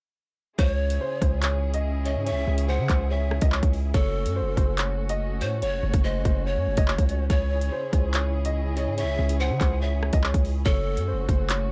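Tense and menacing, this half-time drill hip hop excerpt at 143 BPM in C# harmonic minor sets a worn, boxy piano melody with tape echo against a breathy bamboo pan flute second line, veiled con sordino strings holding sustained chords over C#m and F#m, a heavy distorted 808-style bass, and an up-front drill kit of hard-clipped kick, metallic hi-hats, handclaps and rim clicks, all in a dark, dry production.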